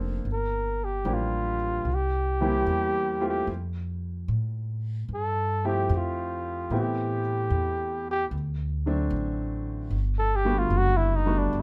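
Concert grand piano and pizzicato upright bass open this romantic, intimate jazz ballad excerpt, with the flugelhorn joining at 0.3 seconds to carry the melody as a solo through to the end at 11.6 seconds. The flugelhorn sits up front with a warm, jazz-style voice, shading its lines with light vibrato and scooped notes. Beneath it, the piano plays accompaniment in a natural, close tone with deep bass and audible action noise that adds to the sense of intimacy. The acoustic bass, strung with steel, is woody and growly and sits prominently in the mix. The swung harmony moves from Gm7 and C7 to Fmaj9, then through Am9 and D7 to Gmaj9, all set in a light reverb.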